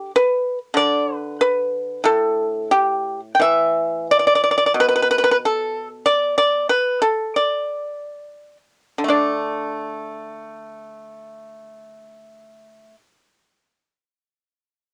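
Flowing and serene, this brief cut from a longer Chinese traditional piece unfolds in a free, rubato 2/4 at 58-97 BPM in the D zhi mode. A solo acoustic pipa, played with fingerpicks and sitting up front, spans A2 to G5 with a percussive, dry attack and a gentle warmth. The home cassette recording keeps the room close and intimate; the music slows from 6.0 to 9.1 seconds before moving into a new section that runs to the end.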